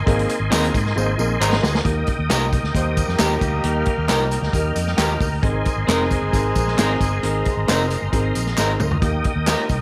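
A clear tonewheel organ with key click and fast rotary speaker holds sustained chords over a round, up-front fingered bass as this joyful, uplifting 1960s-style soul excerpt opens, joined within the first half second by a dark, short-sustaining grand piano, a vintage drum kit with a punchy kick and medium-tuned snare, tambourine and group handclaps, and slightly broken-up guitar stabs with spring reverb sitting in the background, while a mellow, tight horn section with light vibrato and octave doubling carries a second line from 2.7 seconds and the piano takes a fill at 4.5 seconds.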